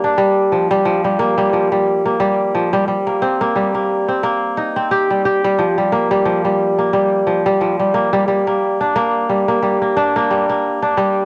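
Wistful and intimate, this short folktronica excerpt, cut from a longer piece, moves at 89 BPM in 4/4 with a gentle sixteenth-note swing, settled in G minor. A lone kora carries the whole passage from 0.0 to 11.3 s, its acoustic strings fingerpicked between F3 and G4 with a crisp, ringing tone that sits up front. The harmony drifts from Gm7 through Cm7 and Bb5 before coming to rest on Gm at 8.3 s. A cassette-tape character colours the kora, lending the home recording a lo-fi intimacy. Wet studio reverb with a short 0.7-second tail gives the strings a glowing halo of space.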